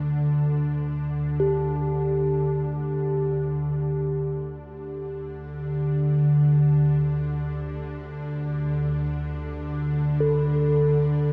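A vast, echoing cathedral space surrounds this meditative world piece, with a long reverb tail hanging on every sound. An ethereal, airy pad holds a drone from the start, spanning D2 to D3. Its detuned sawtooth and triangle voices in unison are softened by ensemble chorus and built-in reverb into a mellow, up-front bed with a slow attack and long release. At 1.4 seconds a quartz singing bowl joins, struck with a wooden striker. Its pure, bright tone rings between G4 and A4 with slow beating, sitting mid-forward but quieter than the pad. The music unfolds in free time, tuned to A4 = 441 Hz, and this fragment of a longer piece stays spacious and contemplative until it ends at 11.3 seconds.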